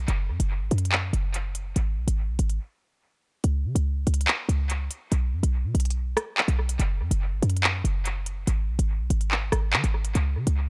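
A punchy, tight 808-style bass sits up front, its sine tone edged with a noise layer, driving this tense, menacing drill cut from a longer piece in a half-time feel. An electronic drill kit of crisp hi-hats, handclaps and rim clicks runs alongside it through an analog delay, with a break from 2.6 to 3.4 seconds before the next section begins. The mix is dry on reverb but heavy with echo.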